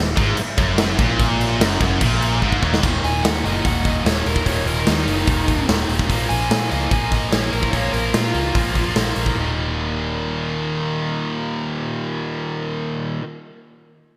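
Opening on a wall of picked riff guitars, overdriven and high-gain, over a round, foam-muted fingered bass and a punchy, up-front rock kit in a stone room, this aggressive, menacing hard rock excerpt in Eb minor at 147 BPM brings in a dark, smooth lead guitar with overdrive and digital delay for a solo from 3.0 s, while the kit drops out at 9.4 s, all bathed in lush hall reverb with bright 1980s-style digital production.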